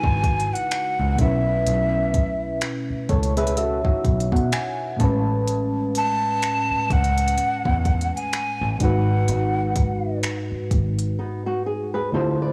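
Sensual and longing, this slow contemporary R&B fragment at 63 BPM has a swung sixteenth-note feel, with a breathy, hollow jazz flute carrying the melody through tape echo and vibrato over a warbling, chorused FM electric piano that adds a fill from 2.6 seconds, a round fingered electric bass, and an electronic kit of finger snaps, crisp hats, soft kick and overdriven snare, while a boxy, thumb-plucked flamenco guitar slips in arpeggios at 3.1 seconds and again at 11.2 seconds as the drums drop out, all moving through C#m11, B9sus4, Amaj7 and G#m7 in a blown-out, overdriven small-room recording.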